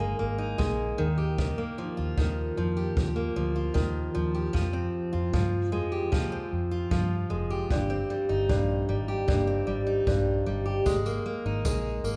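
An up-front picked steel-string acoustic guitar, warm with audible finger squeak, carries this sunny, easy-going acoustic pop passage in a straight 4/4, moving through Absus2, Ebadd9, Fmadd9 and Cm/G before returning to Absus2. Beneath it, a dark, round, foam-muted vintage electric bass sits low, while a boomy, natural kick played with brushes comes in at 0.6 s. A jingly, saturated tambourine appears only at 10.9 s, and a moderate recital hall reverb gives the whole short cut from a longer piece the sound of a church or concert hall.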